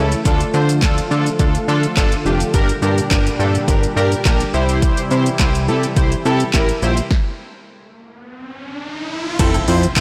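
The recording sounds blown-out and overdriven, with a light reverb around this euphoric, summery dance-pop excerpt cut from a longer piece. An overdriven deep house drum kit sits up front, its deep kick, punchy snare, metallic hats, shaker, handclaps and crash driving a straight 4/4 feel, alongside a plucky, funky analog bass built from sawtooth and square waves with ring modulation and a fast, decaying filter pluck. A big, bold polysynth, fat and detuned with a sub octave and lush chorus, carries the accompaniment up front, while a smooth, warbling vintage pad holds slow-attack chords in the background, both breathing with sidechain pumping over Dm, Gm and C. The pad drops out at 7.1 seconds as the groove stops, and an electronic riser enters at 8.2 seconds. At 9.4 seconds an impact lands on Fmaj7 and a clean, direct-recorded electric guitar slips in behind with a twangy, compressed riff coloured by analog chorus.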